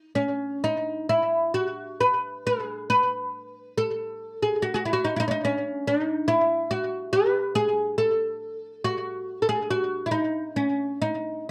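A solo oud, woody and deep with its doubled strings, plays close and up front with a slapback echo in this short, tender and wistful excerpt of celtic folk. The playing moves in a loose, rubato 3/4 at roughly 64-73 BPM, staying in a middle register from C#4 to B4 and tuned to A4 = 444 Hz. Light reverb sits around a dry, close sound in the manner of a 1970s studio recording, and the piece shifts into a new section at 1.1 seconds that carries on to the cut at 11.5 seconds.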